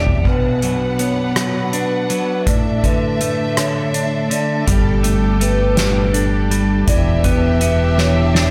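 A short cinematic, melancholic post-rock passage in a straight 6/8 opens with a lush bowed string section holding sustained chords beneath clean electric guitar arpeggios, which sit up front with spring reverb and slapback echo. A vibraphone played with soft mallets adds mellow, ringing arpeggios in a higher register, its slow motor vibrato and slapback echo giving it a boxy, small-room shimmer. A soft-mallet drum kit with dark cymbals, a fat snare and a boomy kick fills out a big room, with drum fills at the very start and again from 8.0 seconds. The growling fingered electric bass sounds briefly at the outset, then returns at 4.7 seconds, overdriven and punchy, as the harmony moves from B minor through Dsus2/A to Gsus2 and Em7. The whole is cut from a longer piece, with light reverb and studio ambience around it.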